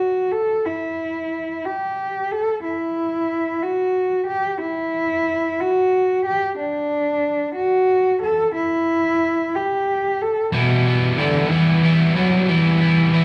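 Rock in 6/8 at 61 BPM in E minor, brooding and cathartic. This clip, cut from a longer piece, builds from the start with a lone muted cello, bowed con sordino by one player, its veiled, soft-attacked line sliding with portamento and vibrato through a slapback echo. At 10.5 seconds a bright, double-tracked, compressed distorted electric guitar riff arrives up front on an E minor chord, all set in a dark production with a moderate large-studio reverb.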